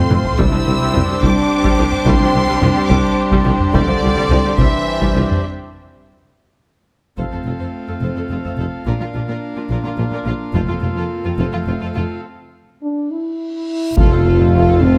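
Heroic and majestic, this cinematic orchestral film-score excerpt in 6/8 sets an intense, distant violin melody over a lush second violin line, bowed violas and thick, romantic pipe-organ foundations. Mellow French horns sustain chords alongside dark, roomy trombones that drop out at 5.4 seconds, while rich cellos, a mellow tuba and soft-attack double basses anchor the low end and a taiko ensemble pounds with heavy sticks in a live room, joined by articulate, hard-mallet timpani. Drum fills and breaks mark the turns, and a huge, dark reverse cymbal swells into an impact at 14.0 seconds, all captured with close, detailed microphones and light reverb.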